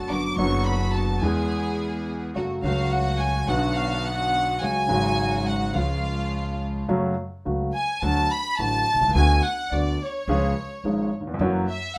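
Nostalgic yet playful, this short tango excerpt moves with a rubato feel in 4/4. A violin section carries a second line, its reedy gut-string tone with light vibrato sitting close and up front, playing solo across both passes of the repeated opening section. Underneath, a dark, mellow concert grand supplies the accompaniment, its intimate, vintage sound reaching into deep bass with audible action noise. An upright bass, plucked on gut strings, adds a woody, thumpy foundation. A biting, earthy string section punctuates with quieter stabs until 6.8 seconds. The ensemble sits in a moderate club reverb, and the harmony moves through a mix of major and minor chords toward a closing F#7.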